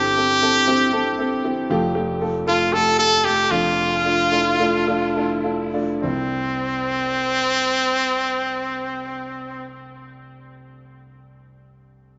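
A live band sound fills a large, wet studio room, with softened, rolled-off highs giving this hopeful pop fragment a warm glow. A brilliant, punchy trumpet leads the melody up front with forceful vibrato and tape echo, while a smooth, vintage grand piano accompanies it over a lightly swung pulse that begins slowing around 1.7 seconds, with the piano playing a fill near 4.9 seconds. The trumpet drops out at 9.7 seconds and the piano carries on alone until 12.2 seconds.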